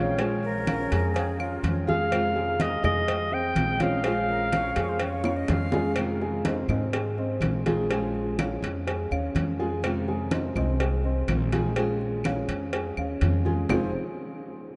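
A straight 4/4 pulse at 124 BPM drives this danceable, nostalgic fragment of Cuban son and guajira in F minor, where a breathy, whispered clarinet carries the melody up front until 5.5 seconds, joined by a bright, reedy concert flute on a second line, over fingerpicked nylon-string guitar, dark, boxy grand piano arpeggios with slapback echo, a thumpy gut-string upright bass, ringing low congas, round vintage cowbell and bongos, and woody claves, all swimming in a vast cathedral reverb as Bbm7 and Fm7 alternate and a drum fill arrives at 5.2 seconds.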